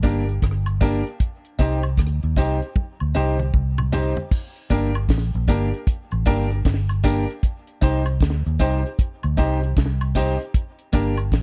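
A deep, dry reggae drum kit sits up front with a high-tuned snare, tight kick, rim clicks, hi-hat, toms and crash, its slapback echo framing a fill from 2.8 to 4.3 seconds. A dark, round, foam-muted electric bass anchors this laid-back, hypnotic roots reggae groove, while a slightly broken-up, compressed guitar with dub echo accompanies and a bright, woody, slightly detuned upright piano with audible action noise adds stabs over two alternating minor chords. Tambourine and woodblock sit low in the mix of this small-room, 1970s-style studio recording, a short cut from a longer piece.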